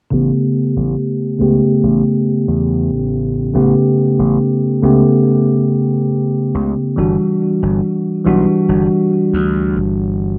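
Woozy and hazy, this short vaporwave excerpt drifts at 70 BPM in a straight 4/4. A bell-like, up-front tine electric piano carries the accompaniment through lush chorus, tape echo and vintage 12-bit sampler grit, while a punchy, overdriven slap bass sits lower in the mix underneath. The harmony rests on A9 before moving to Em9/G at 7.0 seconds, and a filter sweep runs throughout the rough, low-passed home-demo sound, which is bathed in a lush hall reverb.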